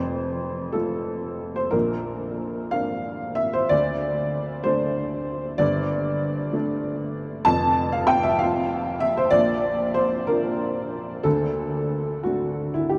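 Neoclassical minimalist piano in F major, peaceful and hopeful, moving at a slow 63 BPM in 6/8 with uneven, rubato beats across this short 13-second excerpt from a longer piece. A solo upright piano, dark, woody and slightly detuned, sits up front with audible action noise and a boxy, short-sustain tone, spanning F1 to A5 as chords pass from F through Bb, D5 and Gsus2. A huge, wet ambient reverb with a 7.9-second decay places it in a vast, echoing space.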